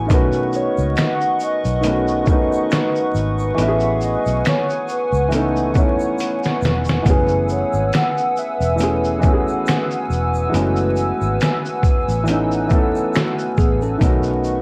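Hazy and melancholic, this lo-fi hip hop excerpt drifts at 69 BPM in 4/4 with a gentle swing on the sixteenths, sitting in F# dorian and moving from B9 to F#m11 at 3.6 s before returning to B9. A felt-muted upright piano sits up front with soft, intimate accompaniment and audible action noise, dulled by a low-pass filter, cassette tape and plate reverb, while an airy, flute-like pad with chorus and ring modulation holds sustained chords high above. Underneath, a dark, round, foam-muted electric bass anchors the low end, and a gritty, pitched-down sampler-style kit with a thumpy kick, medium-tuned snare, hi-hat, shaker and finger snaps carries 12-bit grit and a large-room character, with a drum fill from 6.2 to 7.1 s. A hollow, woody clarinet-like synth lead with vibrato and a soft attack carries the melody until 9.0 s, and a grainy egg shaker sits in the background. Near the end, a worn, slightly out-of-tune tine electric piano appears briefly at 13.2 s with tape echo, all wrapped in the vinyl crackle of a home cassette recording.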